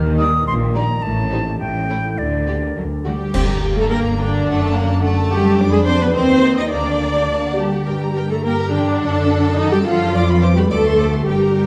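In a straight 2/4 at 106 BPM, this playful, whimsical cinematic film cue in G minor has a magical, mischievous air, built on ringing, fingerpicked concert harp arpeggios over focused bowed double basses and lush cellos, with a rich viola section up front in the accompaniment, a clear violin melody set in the background above a second violin line, an airy silver flute that adds its own line until 2.8 seconds, and dark, close clash cymbals, concert bass drum and cymbal swell that mark a band accent at 3.3 seconds and return at 10.1 seconds, the whole excerpt sitting in a moderate scoring-stage reverb with a warm production.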